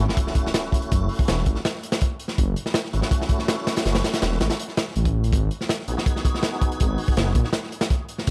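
A dark, crackling small-room sound frames this frenetic, nostalgic drum and bass excerpt at 163 BPM in F# dorian, where a gritty, saturated, mid-forward breakbeat kit with tight kick and medium-tuned snare drives up front over a thick, beating detuned saw bass, while a full tonewheel organ plays stabs through slow rotary speaker, chorus vibrato and dub echo until 7.5 seconds, a faint electronic sub drop opens the piece, and the harmony moves from F#m7 to G#m7 at 5.3 seconds.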